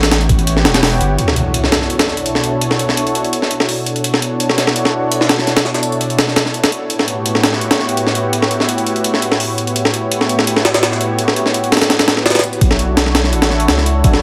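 A gritty, compressed breakbeat kit with a thumpy kick and high-tuned snare drives this raw, frenetic drum and bass and jungle excerpt at 168 BPM in B minor, while a lush, warbling, detuned sawtooth pad with chorus sustains A13 and Bm11 chords up front, a deep, saturated sine sub bass drops out at 1.2 s as an electronic impact hits and returns at 12.6 s for the build-up after a brief swell, all set in a moderate hall reverb with a heavily squashed, radio-like sound.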